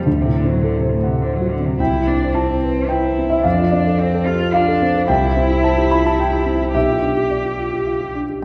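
Bathed in the wet reverb of a church or concert hall, this hopeful, tender neoclassical excerpt in C major drifts in a rubato 3/4 around 108 BPM. A dark, mellow grand piano with audible action noise and a vintage character plays the accompaniment, while a rich, bowed solo cello sings a smooth second line with vibrato until 8.1 seconds, and the piano rings on alone to 8.4 seconds.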